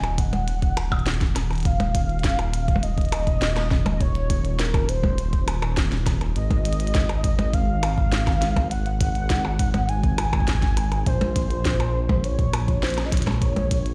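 Played on a big sound system in a bare room and bathed in large studio reverb, this melancholic, intricate IDM excerpt moves at 102 BPM as a velvety, mellow synth lead carries the melody through chorus and dub echo over a dark, rumbling detuned saw bass with tube saturation sitting up front, while a glitchy kit of clicky hats, percussion blips and a tiny snare is joined by a deep electronic kick entering at 0.2 seconds, the harmony shifting from an open start to Ab5 at 6.4 seconds and Bbm at 11.1 seconds.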